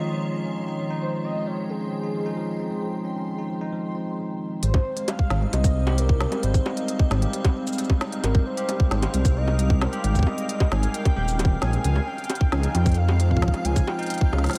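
A dark, rumbling detuned saw bass sits up front in this wistful, glitchy IDM excerpt in Ab major at 133 BPM, arriving at 4.6 s alongside an organic electronic kit of bongos, shaker, woody snare and crisp hi-hats, low-pass filtered and re-recorded in a large room, with a tight, tape-warm electronic kick joining at 4.7 s. Above them, a velvety synth lead with chorus, delay and vibrato carries the melody, while a bell-like tine electric piano plays arpeggios through tape echo and an icy, crystalline glass pad holds sustained chords. A bubbling, resonant stepped-filter texture pumps quietly in the background, and the whole dreamy mix is soaked in a moderate cathedral reverb as the harmony moves from Dbmaj9 to Abmaj7 and back.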